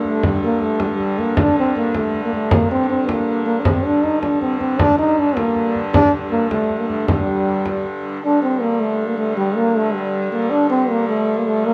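A mellow trombone with light vibrato carries the G minor melody up front in a jazz style, over a dark, nasal, reedy hurdy-gurdy drone and a soft-handed, close frame drum, all starting together in this driving, ancient-sounding medieval dance in 6/8 at 105 BPM, tuned to A4 = 437 Hz; the drum drops out at 7.9 s while the trio, playing live in one room, sits in a moderate large-studio reverb.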